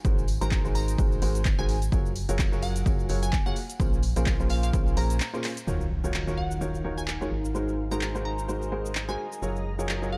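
A clear, woody upright piano carries the riff in this bittersweet, soulful piano house fragment, its worn, slightly detuned tone pumping against the sidechain. It sits at 128 BPM in 4/4 with a 56% swing on the sixteenths, in Eb dorian, over chords such as Ab9, Gbmaj9, Bbm9 and Ebm9. Underneath, a hollow, organ-like FM bass gives short, percussive notes that also pump. A punchy, overdriven analog kick drives the groove until 4.8 s, while an overdriven drum machine supplies handclaps, hi-hat and shaker, and a very quiet tambourine adds a small-room acoustic touch. Above it all, a glassy, crystalline wavetable pluck with chorus and dub echo sketches the melody. After a brief break and drum fill, an electronic impact arrives in the background at 5.7 s, and a cloudy, evolving granular pad with its own reverb drifts in at 6.5 s, all within a dark production with light digital ambience.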